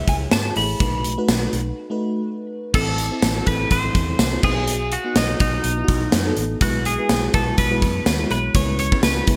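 Uplifting and glossy, this excerpt of 1980s-style pop moves at 124 BPM in 4/4 with a light sixteenth-note swing, and a break at 1.8 seconds leads into a new section at 2.7 seconds, where the harmony moves from Amaj7/C# and B7 onto Am, B, Eadd9/B and C#m7. A bright, twangy, compressed twelve-string electric guitar carries the melody with subtle chorus. A lush, dreamy FM electric piano with a soft pad layer adds chorus and tremolo, while a dark, round, foam-muted fingered bass and an up-front gated drum kit with punchy kick, snare, hi-hat, crash and tambourine drive it all inside a lush hall reverb and bright digital production.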